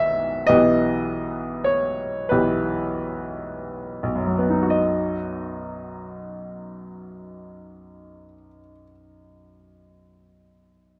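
Set in a dark, warm production with a moderate large-studio reverb, this tender, nostalgic fragment of a romantic classical nocturne features a bright, brilliant baby grand piano, natural and up front, playing alone in 12/8 with free rubato, slowing over the first 4.7 seconds as an E minor over B harmony settles onto B major for a new section that runs until the cut at 11.0 seconds.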